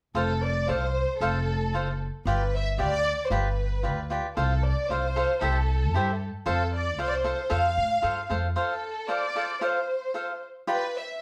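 Romantic and proud, this short mariachi-style Mexican folk passage, cut from a longer piece, moves in a loose, rubato two-beat feel. A dark violin section carries the melody in the upper register, its bowed ensemble tone shaped by soft attacks and vibrato with a woody grain. Beneath it, a cavaquinho picks a mellow yet crisp accompaniment, while a growly pizzicato upright bass on steel strings anchors the low end until it drops out at 8.5 seconds. The harmony moves from F to G7, passes through F/C and C, and settles back on F, and the opening section comes around again at 8.6 seconds. All three parts sit up front in a live room sound with a wet studio reverb, and the violins ring on to the close at 11.2 seconds.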